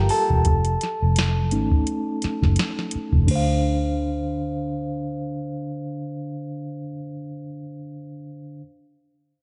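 A light reverb and a softened, rolled-off top end give this short cut from a longer neo-soul and R&B piece a smooth, sultry haze. At 85 BPM in 4/4 with a gentle sixteenth-note swing in D minor, it opens on a tine electric piano solo, the instrument mellow and clean through its built-in speakers and set up front, moving over chords from F7b13 to Dm7. Beneath it, a vintage muted fingered electric bass sits low, dark, round and punchy with a foam-muted, amped tone. A soft vintage analog rhythm box adds a dry, deep kick, crisp snare, metallic hi-hats and a crash cymbal before dropping out at 3.5 seconds. The bass carries on until 6.9 seconds, and the electric piano rings on alone to close the passage at 8.6 seconds.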